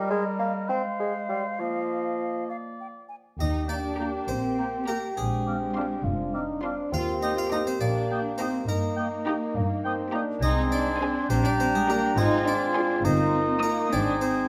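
In 6/8 at 68 dotted-quarter beats per minute, this playful, whimsical film cue in Eb major opens with a woodwind quartet: hollow, close-miked flute, mellow oboe and a clear clarinet tracing second lines over a mellow bassoon accompaniment. At 3.4 seconds a brilliant, plucked harpsichord takes the melody, joined by sustained chords from a distant French horn section, a muted double bass section up front and a lush, muted cello section. From 4.0 seconds, veiled con sordino violins and violas add an upper melody in the background along with a very quiet second line and accompaniment, all set in a moderate scoring-stage reverb.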